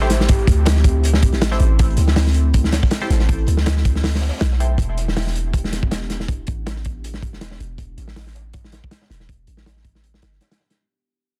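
Drum and bass with a jungle feel, this dark, raw excerpt runs at 160 BPM in 4/4 with a light swing on the 16ths, moving from Am7 to Em7 at 4.8 seconds. A crunchy breakbeat kit sits up front, its acoustic hi-hat, tight kick and medium-tuned snare saturated and gritty with a rolled-off top, while a second, very quiet layer of the same kit adds hi-hat and a high-tuned snare. Underneath, a deep, boomy 808-style bass with a sine core and a noise layer hits with a fast attack and decays, carrying a filter sweep throughout. In the background, a warbling, nostalgic pad of detuned square and triangle tones with ring modulation holds sustained chords through chorus and built-in reverb. A nasal, band-passed sawtooth chord stab, treated with chorus, phaser and dub echo, punctuates only the first 4.7 seconds, and a faint electronic downlifter passes in the opening 1.8 seconds. The small room and dense, heavily limited modern master keep the mix tight as the whole passage fades out.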